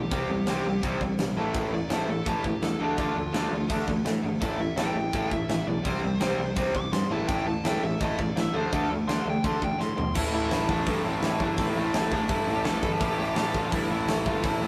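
Punk rock in A minor at 168 BPM, angry and raw, cut from a longer piece and played with a straight 4/4 drive. A dark, smooth lead guitar with overdrive and tape echo takes a solo from the start until 10.2 seconds, sitting back in the mix above two picked rhythm guitars playing riffs, one overdriven in the background and a bright, up-front raw garage guitar. Underneath, an overdriven picked electric bass with a growly, direct tone holds the low end, while a big acoustic rock kit with bright cymbals, a punchy kick and a medium-tuned snare sits up front. A drum fill from 9.8 seconds leads into a new section at 10.2 seconds, where the harmony settles on A minor after the solo's movement through C, A, D minor and D. The whole band rings in a moderate stone-room reverb, giving it the rough feel of a rehearsal-room recording.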